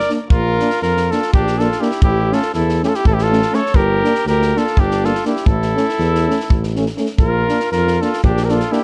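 The close, dry sound puts every detail of this short Balkan brass band passage within reach, as a fiery yet bittersweet tune in 7/8 races along at 244 BPM through Bb, A and G minor. A clear, up-front flugelhorn carries the melody over a lighter trumpet second line with its faint vibrato, while a warm trombone and a mellow, vibrato-tinged euphonium sit back as accompaniment. A mellow tuba, distant and roomy yet prominent, anchors the bass from 0.3 seconds, and a compact cocktail drum kit drives everything with a punchy kick and a high-tuned snare.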